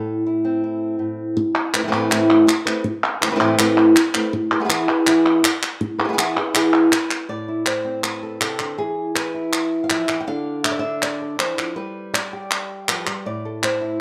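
A fingerpicked acoustic flamenco guitar opens alone, carrying the melody up front in this fiery, dramatic excerpt with a straight feel. Crisp palmas hand claps join at 1.6 s, present with a live-room character, while the guitar's warm tone moves through changing harmony and returns to A minor at 13.3 s. Close, detailed miking and a moderate studio reverb give the pair clarity and a sense of space.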